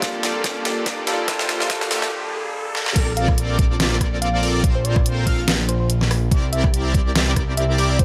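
An overdriven, knocking electronic kick leads this playful, euphoric future bass fragment at 143 BPM in a swung half-time feel, joined by an up-front pop kit with a deep snare, a bold, detuned sawtooth polysynth riff with sidechain pumping, a barky tine electric piano, very quiet bowed strings, a ringing harp with dub echo and a faint riser through the build-up, before the drop at 3.0 s brings in a fat, nasal analog bass, an airy, dreamy background lead and, from 3.2 s, a round FM melody, as the chords move from Gm9 to Bbmaj9 and C9 in light digital ambience.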